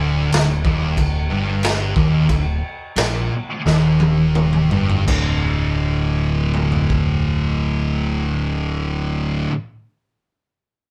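Recorded as a band playing live in one room with light reverb, this brooding, hypnotic stoner and doom metal excerpt sets two dark, up-front fuzz guitars on a low riff over a bright, growly picked electric bass with overdrive, while a gritty, saturated garage drum kit with a punchy kick and rolled-off top enters at 0.3 s, plays a fill from 3.7 s as the opening section slows down, and stops at 7.1 s, after the harmony moves from Ebmaj7/D to D5 at 5.1 s.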